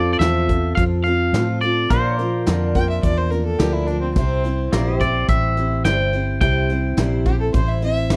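Honky-tonk and classic country with a sunny, easygoing straight feel, built over F, Bb and C chords in a small room. A twangy, scooped electric guitar carries the melody up front, while a bright, full-bodied dreadnought acoustic guitar is picked with audible finger squeak, a round, dark foam-muted electric bass sits close, and a soft brush kit with a punchy kick joins at 0.2 s from a distant, roomy position. A compressed pedal steel guitar adds sustained chords with volume swells and a subtle chorus in the background, and a smooth, boxy bowed fiddle with light vibrato enters at 2.8 s with a second line.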